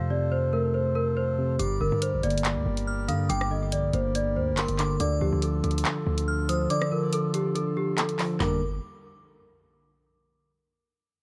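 Dry and dark, this menacing drill excerpt has a tense, half-time feel. A bright, bell-like celesta carries the melody through tape echo over a worn, slightly out-of-tune tine electric piano up front, with a reedy, breathing harmonium holding quiet sustained chords beneath. At 1.6 s a hard-hitting, sine-based 808 bass, an up-front electronic drill kit with a woody snare, handclaps, hi-hat, rim clicks and toms, and a glassy, crystalline FM synth bell treated with chorus, phaser and tape echo all join, moving from G minor through D minor.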